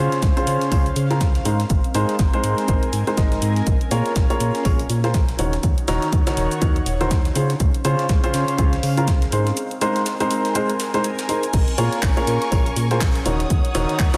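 Piano house at 122 BPM with a swung 16th feel, bittersweet and soulful, where a woody upright piano riff with audible action noise, delay and sidechain pumping rides over a hollow, organ-like FM bass, a breathy chorused pad in the background, a punchy tape-toned electronic kick up front, layered garage claps, hats and crash, and a gritty high-passed breakbeat kit with a high-tuned snare, all cycling through Dbmaj7, Abadd9, Bbm7 and Ebm7 in a dreamy hall-soaked mix until a distant, vibrato-rich violin section enters with sustained chords at 11.5 seconds.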